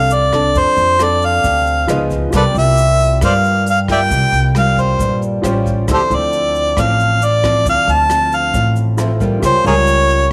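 A straight 4/4 bossa nova groove at 135 BPM is set by a jazz brush drum kit with a boomy kick, hi-hat and rim click, plus a grainy, bright egg shaker close in the background, while a woody, dark pizzicato upright bass with transformer saturation thumps beneath fingerpicked nylon-string guitar. Up front, a warm harmonica sings a relaxed, romantic jazz solo full of vibrato, scooped notes and tongue slaps, and an intimate concert grand piano with audible action noise sits softly behind it. The harmony moves from F6 through Db9, C7sus4, A7alt and Dm9 to Bbm6/Db in this brief cut from a longer piece, all in a small, lightly reverberant room.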